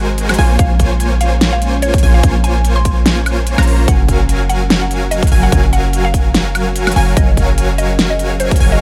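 Emotional and lush, this future bass excerpt moves at 146 BPM in 4/4 with a half-time feel and a light swing on the sixteenths, shifting from Bbm9 to Gbmaj13 at 3.9 seconds. Huge, bright supersaw chords carry the riff, built from detuned sawtooth voices, while an ethereal pad with a slow attack and long release sustains chords in the background through ensemble chorus and its own reverb. A detuned unison pluck sends arpeggios through digital delay, and from 0.6 seconds a woody, round mallet-like synth pluck sings the melody with subtle chorus and delay. Down low, a deep, boomy 808-style bass sits up front, joined by a punchy, tape-warm electronic kick and a big-room kit with a massive snare, crisp hats and woodblock. Sidechain pumping breathes through the pad, both plucks, the supersaws and the bass, and the overall mix stays dry.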